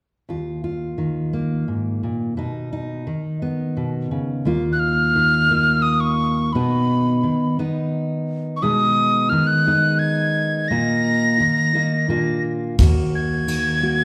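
Set in a wet recital-hall reverb, this melancholic, intimate acoustic folk excerpt in Eb minor moves at 86 BPM in 3/4, with a full-bodied fingerpicked steel-string guitar (finger squeak audible) carrying the accompaniment from 0.3 seconds, a breathy, mellow tin whistle with vibrato and chiff taking the melody from 4.7 seconds, and a woody, growly pizzicato upright bass and soft brush kit with a tight kick and ride cymbal appearing together briefly at 12.8 seconds as the chords settle onto Ebm.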